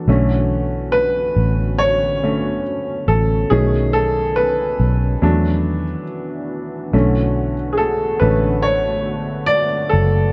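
A lazy 70 BPM groove in 4/4 swings its sixteenths at 62%, setting a hazy, nostalgic lo-fi hip hop mood in B dorian. The upright piano carries the lead from 0.0 seconds, its woody, boxy tone, short sustain and low-pass filtering sitting up front as it moves through Bm9, B13, E9sus4 and back to Bm9. Just behind it, from 0.1 seconds, a vintage fingered electric bass with a round, foam-muted, amped sound holds the low end. Underneath both, a deep, moody ambient pad built from detuned sawtooth and sine layers with a sub octave swells in slowly and hangs on long, softened by chorus, its own reverb and a low-pass filter. The whole mix is dark and mellow, rounded off above 10.4 kHz and set in a moderate plate reverb that gives this short cut from a longer piece a warm, dusty glow.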